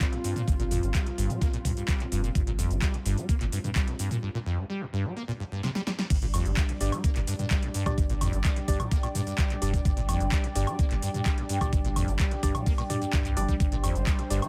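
Gritty and hypnotic, this acid house cut from a longer piece rides a straight 4/4 pulse, with a thumpy, up-front electronic kick and an overdriven analog drum machine supplying punchy snare, claps, metallic hats, shaker, toms, woodblock and crash. Far beneath them sits a very quiet, compressed sampler-style soul kit of hi-hat and snare. A squelchy, resonant sawtooth acid bass carries the riff up front, its filter sweeping under lush chorus and dub echo, while a round sine sub bass joins at 0.5 seconds with tube saturation. A smooth, detuned analog pad holds sustained chords throughout, pumping with the sidechain like the other pads and basses. After a break from 4.2 seconds and a drum fill, the drop lands at 6.1 seconds. At 6.8 seconds a worn, slightly out-of-tune tine electric piano comes in, playing overdriven stabs through a combo amp with dub echo. At 7.0 seconds a dark, warbling lo-fi tape-like pad follows, drifting nostalgically in the background.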